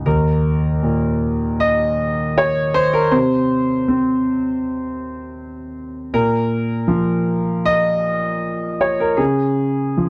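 The rhythm moves in a free, rubato 4/4 at about 79 BPM, with time that breathes rather than holding a strict pulse. This wistful, melancholic neoclassical minimalist piece is a short cut from a longer work, carried entirely by a solo concert grand piano tuned to A4 = 435 Hz and spanning Eb2 to Eb5. The piano sounds clear and open, with a deep bass and an up-front presence. The harmony rests on Eb5 at the start, drops away from any chord at 3.1 seconds, moves to Bb5 at 6.1 seconds and settles on Db near the end. The dry, close studio sound, in a 1970s style with little reverb, keeps the instrument intimate and exposed.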